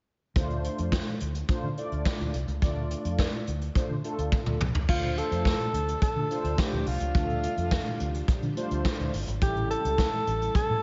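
Slick and funky, this short cut of early-eighties boogie funk rides a straight 4/4 groove. From the start, a vintage brush drum kit with a punchy kick, medium-tuned snare and dark cymbals sits up front beside a round, foam-muted fingered electric bass, while mellow synth brass with chorus and vibrato fills in detuned sawtooth chords over a Dm7 harmony. A drum fill at 4.3 seconds leads into a new section at 4.9 seconds, where a breathy alto saxophone takes the melody in a jazz style, its subtone carrying tape echo and a roomy, distant quality. At the same moment a very quiet string machine adds lush, full-bodied sustained chords with a slow attack and ensemble chorus underneath. The harmony shifts to A7 near the close, and the whole mix sits in a lush hall reverb with a big arena sound and a rolled-off, darkened top end.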